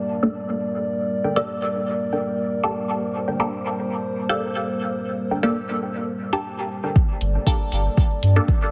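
Dub techno in G minor at 118 BPM, cavernous and meditative, this short cut opens on a dark, nasal analog pad holding a Gmadd9 chord with chorus and sidechain pumping. A muted, sawtooth-based chord stab, bright and up front, quickly joins it, and at 1.2 s a second muted, sawtooth-based stab, mellow and evolving with cassette tape colour, adds a riff, both plucking through phaser and dub echo. At 7.0 s an overdriven, layered kick arrives, joined at 7.2 s by a round, soft sub bass and a gritty analog hi-hat. The whole sits in light digital ambience with a heavily compressed, radio-like sound.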